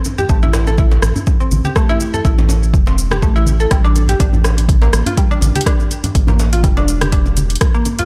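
The production sounds dark and warm, with a light digital reverb around it, in this short cut from a longer afro house track that feels earthy and spiritual at 123 BPM in 4/4 with a gentle 16th-note swing, set in A phrygian. A woody, FM-flavoured synth pluck with a mallet-like, percussive attack carries the arpeggios from the first second, made lush by chorus and delay and breathing with sidechain pumping, over chords that move from A5 to G5 at 3.7 seconds. The kit's metallic hi-hats, rim click and shaker run throughout with overdrive and studio reverb, and a punchy, layered electronic kick, also overdriven, arrives at 0.3 seconds to anchor the groove. A round analog bass with a square and sine tone and a fast filter pluck enters with the kick, sitting deep and pumping against it. Low-tuned congas with a thick skin sit very quiet and close, while a deep djembe in a live room stays in the background, lending an acoustic, hand-played texture to the electronic pulse.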